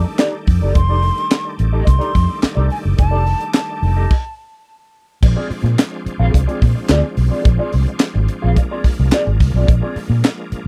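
A tight, straight funk groove in 4/4 drives this strutting, gritty cut from a longer piece, with an acoustic drum kit entering at 0.2 s on kick, high-tuned snare, hi-hat, handclaps and crash cymbal. Up front beside it, a vintage foam-muted fingered electric bass sounds round, dark and punchy, while a clean electric guitar with wah adds mellow accompaniment. A lightly overdriven tonewheel organ holds full, shouting chords lower in the mix, colored by chorus vibrato and a slow rotary speaker. Over the opening F13 harmony, a breathy silver concert flute plays a close-miked, hollow melody with vibrato, ending at 4.3 s, just after the band hits a stop at 4.1 s. The groove returns at 5.2 s on a Bb9 chord, and the close 1970s-style studio sound, with little reverb, keeps the drums and bass present.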